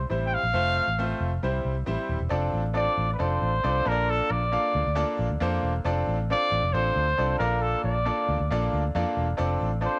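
A vintage-toned trumpet carries the melody from the first moment, playing in a jazz-inflected solo style with vibrato and a warm, up-front presence. This is a danceable slice of uptempo 1960s-style soul in a straight four-four feel, taken from a longer piece. Underneath, a foam-muted electric bass gives a dark, round and punchy low end with an amped edge, and a brilliant grand piano adds accompaniment with long sustain and audible action noise that makes it feel intimate. After an opening passage that moves between C and F chords, the harmony settles from 2.3 seconds into a relaxed sway between F6 and Bbmaj7. The sound is warm and vintage, with light reverb and a small-room ambience that keep the three players close together.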